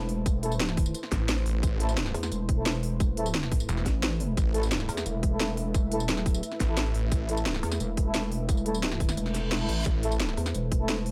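A dark analog pad holds sustained A minor chords with chorus and sidechain pumping over a pulsing, detuned pluck wobble bass, opening this tense, mechanical stretch of dark technical drum and bass at 175 BPM in 4/4. A tight, overdriven electronic kick and a kit of cracking snare, crisp hats and tambourine sit up front, while a mellow brass ensemble with light vibrato fires stabs through dub echo. From 1.1 seconds a snarling, growling distorted saw bass with a moving notch enters, and a reverse cymbal sounds from 9.3 to 9.9 seconds as the kick drops out, all set in a digital ambience.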